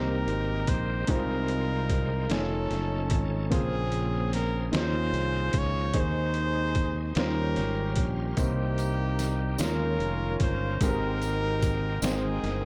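An echo-heavy mix with light reverb wraps this short, slow gospel piece in 6/8, cut from a longer work, in a reverent, soulful mood. Up front, a clear horn section carries the melody in a pop style, its ensemble sound smooth on top with light vibrato and trailed by dub echo. A warm baby grand piano accompanies from the background, also echoing, while a very quiet tonewheel organ holds full, shouting chords, clean and bright, with key click, chorus vibrato and a slow rotary speaker. Underneath, a growly, direct and amped fingered electric bass sits forward in the mix, and a sampler-style trip hop kit enters at 0.3 seconds, compressed, pitched down and overdriven, with a thumpy kick, a medium-tuned snare and hi-hat. A jingly, close and dry tambourine joins in the background at 8.4 seconds, caught in the dub echo as the chords move from Cm7 through Eb9sus4 to settle on Abmaj9.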